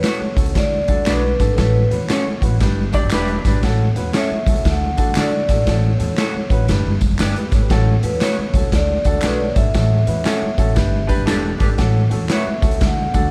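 A dark, dry production dusted with vinyl crackle carries this uplifting, danceable slice of swinging 1960s-style soul, led by a ringing, metallic vibraphone melody over a mellow, woody upright piano. A saturated, gritty garage drum kit sits up front with a punchy kick, joined by pizzicato upright bass on steel strings from 0.2 s, background handclaps and tambourine, and slightly broken-up electric guitar stabs bathed in spring reverb. A second, lo-fi, compressed guitar slips in a brief fingered riff from 2.9 to 3.6 s, as the harmony cycles through A6, D and G.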